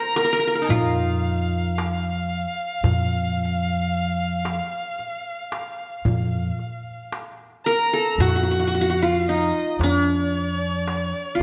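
A moderate recital-hall reverb surrounds this passionate, stately Turkish makam ensemble excerpt at 112 BPM in 10/8, where an up-front, bright-edged, plectrum-plucked qanun with triple strings carries the melody, a distant, expressive bowed violin adds a second line with vibrato and portamento, a clay-shell darbuka with natural skin and soft hands sounds compressed and saturated from 0.2 s, and a woody, thumpy pizzicato upright bass holds F2 from 0.7 s as the music moves into F makam hicaz at 8.2 s.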